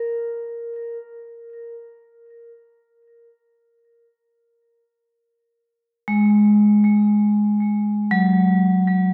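Soaked in wet spring reverb and an echo-heavy mix, this spacious, reflective ambient fragment cut from a longer piece drifts in free time as a solo vibraphone, struck with hard mallets and played with the motor off, rings out brilliant and metallic up front between F#3 and A#4 through tape echo, tuned to A4 = 441 Hz and settling on an F#sus2 chord at 4.5 seconds before dissolving into open, chordless resonance.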